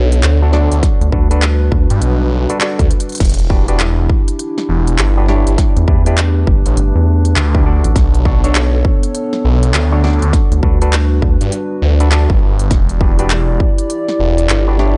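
A thick, swirling phased saw bass leads this gritty, swaggering glitch hop excerpt with a swung groove, backed by a punchy up-front electronic kick, a dubstep kit of deep snare, crisp hats, handclaps and crash with a fill at 2.9 s, stringy auto-wah clav stabs through analog delay, a moody wave-folded pad pumping beneath, and a rubbery square bass that bounces in briefly at 1.0 s and returns from 5.8 to 11.4 s, all in a dry, hardware-rough sound.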